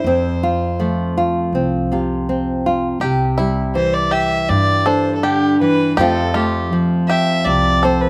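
Nostalgic and peaceful, this acoustic folk piece moves at an unhurried 81 BPM in 4/4 in C major, with the chords shifting from F to Cadd9 and back to F. A reedy, gut-toned bowed fiddle carries the solo up front throughout, over fingerpicked nylon-string guitar with a deep classical warmth and a woody pizzicato upright bass. At 3.0 seconds a twangy, percussive banjo joins with fingerpicked arpeggios, all set in light reverb from an outdoor recording.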